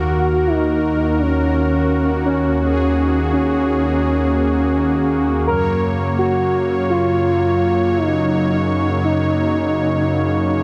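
Moody and nocturnal, this synthwave excerpt moves at 84 BPM in Eb minor, where an expressive, smooth sawtooth synth lead with chorus, cassette tape and digital delay sings a mellow melody over a brassy, nasal, detuned analog pad with chorus and a filter sweep holding sustained chords up front, shifting from Ebm to Gb at 5.5 seconds inside a wet scoring-stage reverb and a dense, heavily limited modern master.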